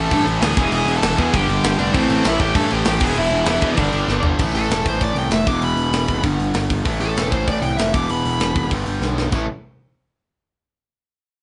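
Recorded live in a small, moderately ambient room with a rolled-off top end, this angry, aggressive punk rock piece at 195 BPM drives on a growly, fuzzed picked bass and an up-front, tight metal drum kit, with a bright overdriven guitar riff, a double-tracked high-gain distorted guitar in the background until 4.4 s, and a very quiet hollow-body semi-hollow guitar, while a smooth overdriven lead guitar carries the melody and, after a drum fill, takes a solo from 4.4 s to 9.3 s.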